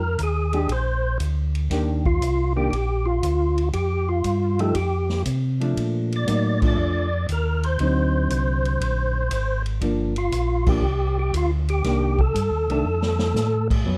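Soul jazz organ trio swinging in Bb major at 118 BPM with a soulful mood, where a fat, lightly overdriven tonewheel organ with percussive key click and slow rotary speaker carries the melody up front, a round, mellow organ holds the bass, a dark, clean hollow-body jazz guitar adds accompaniment from 0.5 seconds, and a distant, roomy drum kit with dark cymbals and a boomy kick swings along as the band hits accents at 6.5 and 10.6 seconds before a drum fill at 12.9 seconds, all under light reverb in a dark production.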